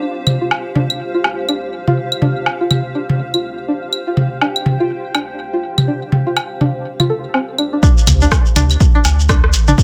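A twangy, string-like resonator pluck riff with chorus, cassette tape grit and dub echo opens this hypnotic, cool minimal techno excerpt at 123 BPM in D minor, alongside a bubbling stepped-filter texture and a cloudy, evolving granular pad, all three pumping against the sidechain over a Dm7 chord. From 0.3 seconds a rubbery, hollow square bass and up-front electronic toms, claves and woodblock settle into a swung 16th-note groove in light digital ambience. At the drop at 7.8 seconds the pad and bubbling texture fall away as the harmony shifts to D5, and a punchy electronic kick and a grainy, close shekere join in, followed moments later by an analog drum machine's hi-hat and rim click.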